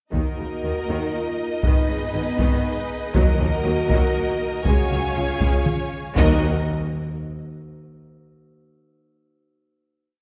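Heavy taiko strokes sit close and up front in this dark, relentless epic orchestral film cue in Eb minor at 120 BPM in 3/4, where rich vibrato violins carry the melody over a clear second violin line, a driving viola ostinato, dark distant French horn chords, expressive portamento strings, a very quiet cello bass ostinato doubled by a smooth double bass, and soft-mallet timpani strokes at 3.1 and 6.2 seconds, all bathed in wet scoring-stage reverb before a final Ebm chord.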